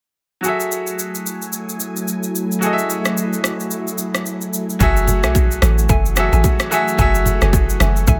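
Amapiano with a late-night, soulful mood, this brief cut from a longer piece moves at 110 BPM with a swung sixteenth-note feel. A clear baby grand piano carries the accompaniment from the start, voicing an F#m9 chord over a punchy, up-front deep house kit of kick drum, rim click and shaker that sounds re-recorded in a small room. From 1.0 seconds a silky, vintage string machine adds dark sustained chords, softened by ensemble chorus and breathing with sidechain pumping. At the drop at 4.8 seconds the deep, round log drum bass arrives up front with a percussive attack, joined by a hollow, bouncy square pluck playing stabs through chorus and digital delay, and close, dry congas and bongos in the background. The mix stays intimate and dry, with little reverb around the parts.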